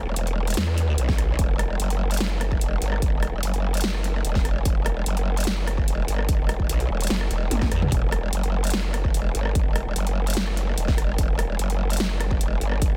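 A half-time groove in 4/4 drives this heavy, menacing wobble dubstep excerpt, with a big-room dance kit of metallic hats, rim clicks, toms and a huge snare joining at 0.2 seconds and a punchy, layered electronic kick arriving at 1.1 seconds, both sounding re-recorded in a small room. Throughout, an aggressive growl bass sits up front with a bright, saturated, wobbling formant-filtered tone, thickened by chorus and overdrive. A brief drum fill lands at 7.5 seconds, and the dry, densely limited mix keeps the sound crushing and close.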